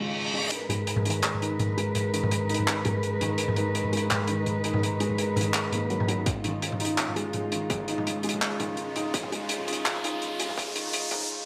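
Dark and tense, this half-time drum and bass excerpt at 167 BPM in G# dorian opens on a reverse cymbal as a dusky cello section holds sustained chords with light vibrato, pumping against the sidechain, while a felt-muted upright piano with audible action noise plays mellow arpeggios through a low-pass filter and delay. A crunchy, gritty breakbeat kit with handclaps, hi-hat and toms sits up front from 0.5 s, the whole passage building over a filter sweep in a small, moderate room reverb. A distorted, tape-warm electronic kick joins at 6.3 s, and a riser climbs from 8.0 s into a break at 11.3 s.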